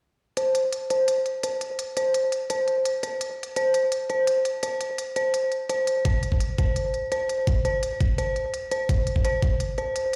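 Tense and heavy, this short cut from a longer half-time drum and bass piece moves at 169 BPM, led from 0.4 s by an eerie, inharmonic synth bell playing up-front arpeggios around C5, its chorused, tape-echoed tone shaped by a filter sweep. Smooth electronic hats run alongside throughout, and an overdriven, knocking kick drum enters at 6.1 s before dropping out at 9.5 s. A lush hall reverb and the sound of a big sound system playing in a bare room give the whole cut a cavernous weight.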